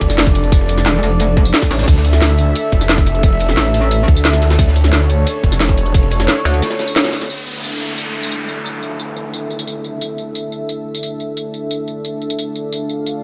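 This excerpt from a dark technical drum and bass track sits in light reverb, and the mood is tense and aggressive in straight 4/4. It opens on a drop where a snarling distorted saw bass growls with detuned sawtooth grit and overdrive, while a metallic wobble bass built from FM tones and chorus cuts in between 0.9 and 4.1 seconds. Underneath, a dark analog pad holds moody sustained chords with a slow attack, 12-bit sampler grit and sidechain pumping, and it carries on through the whole passage. The drums stack a tight electronic kick, an up-front kit with a cracking snare, metallic hats and tambourine, and a saturated, rolled-off breakbeat kit sitting in the background with dark cymbals. The kick and saw bass fall away just before a short break, a band accent lands at 7.0 seconds, and as the breakbeat kit drops out at 7.3 seconds an electronic downlifter sweeps in over the pad and the remaining kit.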